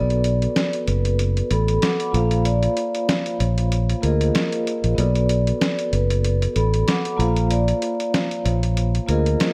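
A boom-bap hip-hop groove at 95 BPM in 4/4 with a light 16th-note swing, where compressed, pitched-down sampler drums built on hi-hat and a medium-tuned snare come in at 0.1 s, gritty and up front, beside a dark, round, punchy fingered electric bass. Two soft-mallet vibraphones ring out over a tough, gritty shift between Bm7 and A#m7: one carries an airy melody with medium motor vibrato and tape echo, while the other plays mellow accompaniment with slower vibrato, both filtered at top and bottom. A small room ambience and vinyl crackle surround this short break, tuned to A4 = 436 Hz and cut from a longer piece.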